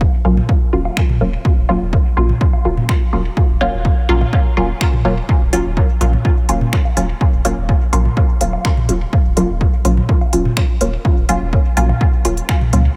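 Cavernous and nocturnal, this dub techno excerpt in Eb minor moves at a straight 125 BPM on a single Ebm7 chord, with a punchy, overdriven electronic kick up front, a round sine sub bass pumping underneath, muted sawtooth chord stabs carrying phaser, sidechain pumping and dub echo, electronic woodblock and toms set in the background with a small room sound, and a deep house kit of finger snaps and smooth hats entering at 1.0 seconds with its own dub echo, all in a dry mix with little reverb.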